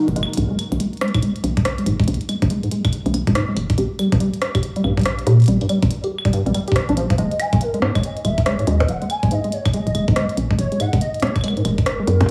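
A swung sixteenth-note pulse in 4/4 drives this intricate, glitchy IDM excerpt, which opens on a brief break with a drum fill at 0.2 seconds. The glitchy drum kit scatters clicky hats, claves, rim clicks and percussion blips with a tape-tinged, produced sheen, and a gritty, pitched-up electronic kick with a sampler-style thump joins up front at 1.1 seconds. Beneath them, a woody, round FM bass sits forward in the mix with dark, quickly decaying notes and tube saturation, while a rubbery, deep acid bass spins square-wave arpeggios with a resonant filter sweep, colored by analog chorus, tape echo and cassette grain. After a fleeting blip at the very start, the warbling, nostalgic lead returns at 7.2 seconds with a mellow, wave-folded tone, vibrato, ensemble chorus and digital delay, over a D#sus4 harmony that moves to F#. A small room and moderate echo-chamber reverb give the mix a compact yet spacious feel.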